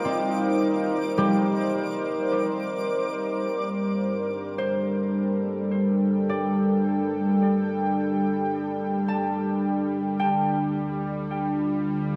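Serene and reflective, this slow ambient excerpt in G minor moves at 53 BPM in 3/4, with a smooth, chorused analog pad holding sustained chords up front while a mellow concert harp rings out fingerpicked arpeggios through an analog delay. Beneath them sits a tense, nasal, string-like drone on G with vibrato, and a sparkling granular texture with an octave-up shimmer twinkles only until 3.5 seconds. The echo-heavy mix is bathed in a plate reverb, and the harmony shifts from Ebmaj13 to Gmadd9 at 3.4 seconds and on to Dm7 at 10.2 seconds.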